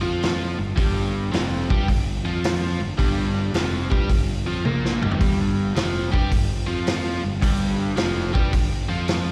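Swaggering and raunchy, this swung blues rock and southern rock power-trio passage, cut from a longer piece, opens on a bright, double-tracked overdriven guitar riff with slapback echo over a growly fuzz bass. A gritty, saturated vintage drum kit with a tight kick and rolled-off top enters at 0.2 s and rolls through a fill from 4.7 s into a repeat of the riff at 5.2 s, where the harmony moves from Fsus24 to Fsus2. The sound feels like a live gig heard through the venue's PA, bathed in recital hall reverb.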